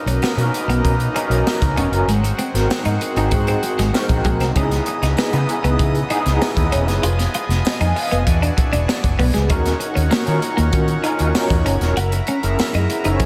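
A straight 4/4 groove at 97 BPM, driven by a crisp fusion drum kit with a high-tuned snare and punchy kick, and a dark, round, foam-muted fingered electric bass, sets up this breezy, upbeat slice of polished 1980s jazz-funk pop in B major, cut from a longer piece. A barky, overdriven tine electric piano with medium tremolo, chorus and slapback echo carries the accompaniment over reedy accordion chords, while a bright, twangy twelve-string electric guitar riff shimmers through lush chorus and a jingly tambourine sits in the background. The progression moves from Bmaj7 through C#m9 and E9 to F#7, and a concert hall reverb gives the whole a big arena sound.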